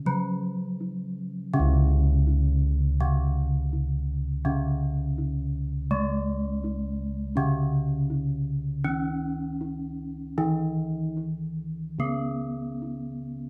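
This is a Javanese gamelan recording, cut from a longer piece, with a shimmering, ceremonial mood and an uneven beat in four. A bronze metallophone carries the accompaniment throughout, struck with a horn mallet, its bright, ringing tone shimmering with beats from its paired tuning. Beneath it, bossed gongs supply the bass line across the whole passage, their round bronze voice pulsing with its own beating resonance. Both instruments sit up front, and the ensemble plays live together in one room with a moderate studio reverb that lets the metal ring into the space. A brief opening passage gives way at 1.5 seconds to a longer second section that runs to the end.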